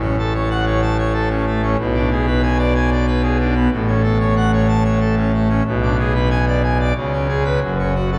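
A full pipe organ with bright mixtures opens this dramatic, stormy excerpt of a classical organ toccata in F# minor at 93 BPM in 3/4, its majestic, romantic voicing spanning F#1 to A5 and sitting up front in a dark production with a cavernous church reverb, as F#m/A and G#dim/B chords alternate before a C#5 at 7.0 s resolves to F#m at 7.6 s.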